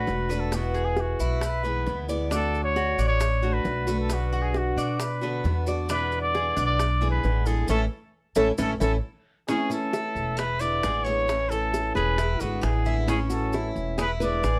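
A breathy, whispered trumpet with vibrato carries the melody over a thumpy pizzicato upright bass, picked steel-string acoustic guitar with finger squeak and metallic double-string tres arpeggios in this sunny, relaxed Cuban son and guajira excerpt, with tight high-tuned bongos and grainy maracas in the background, a band accent from 7.7 to 9.5 seconds, and a fingerpicked flamenco guitar entering at 9.5 seconds with analog delay.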